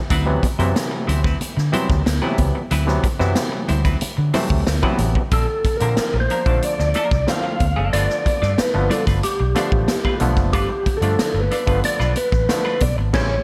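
A small-room sound with light reverb frames this strutting funk cut, taken from a longer piece, at 92 BPM in a straight 4/4, where a punchy, up-front acoustic drum kit with crash, hi-hat, kick and a medium-tuned snare plays alongside a dark, foam-muted fingered electric bass, a clean, compressed picked guitar with subtle chorus, and quiet, high-tuned congas. A stringy, mellow clav adds stabs through tape echo over a D13 chord, and at 5.3 seconds a flute-like tonewheel organ with key click and a fast rotary speaker takes the melody as the harmony moves to Bbmaj7 and then G9. A band accent lands at 13.1 seconds.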